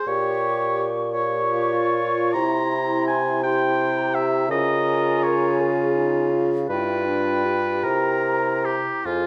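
A wet recital-hall reverb surrounds this brief, solemn fragment of a slow romantic movement for wind quintet, which moves in a lilting 6/8 with a freely breathing rubato. The oboe sits up front with a clear, lightly shimmering tone, carrying the second line beneath the pure, hollow concert flute, whose tongued, vibrato-rich melody sounds close-miked yet rests in the background. The bright clarinet and the French horn, the horn set further back, fill in the accompaniment in the middle register. The warm bassoon anchors the bass up front with a light vibrato. The elegiac harmony passes from Gdim/Bb through C7 and Db to G7 and back to C7, and all five players sound together until the passage breaks off at 9.3 seconds.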